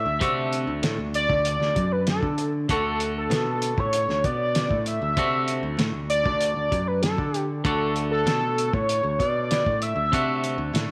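A small room and a light reverb give this short indie rock clip a close feel, with the drums and the lead placed up front. At 97 BPM in a straight 4/4, it stays on a D major chord throughout, and the mood is wistful and carefree. An octave-doubled lead carries the melody with a bold, retro tone that blends sawtooth and triangle, with a fast attack, sustained notes, chorus and vibrato. It stops at 10.7 seconds. Beneath it, a biting, bright overdriven guitar plays a picked riff through subtle chorus and tape echo, while a second electric guitar sits in the background with a dark, slightly broken-up, compressed riff through a small old amp and spring reverb. A modern picked electric bass sounds direct and punchy, and from 0.2 seconds a cloth-damped, thuddy acoustic kit adds a muffled, gritty pulse of hi-hat, tight kick and fat snare, saturated and rolled off at the top.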